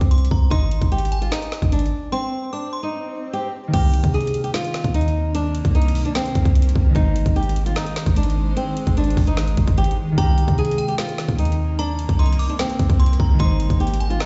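Dark and hard-hitting, this half-time trap passage sets a fingerpicked flamenco guitar melody with digital delay over a deep, boomy 808-style bass and an up-front electronic kit of hard-clipped kick, woody snare, metallic hats and crash, while a delicate, tinkling FM tine bell with chorus and delay opens the piece and returns at 10.2 s, an electronic swell enters at 2.5 s during a break that begins at 2.1 s, and a thumb-plucked, ringing concert harp from 3.7 s and a cloudy, evolving granular pad with its own reverb from 4.8 s sit in the background of a dry sound heard in a stone room.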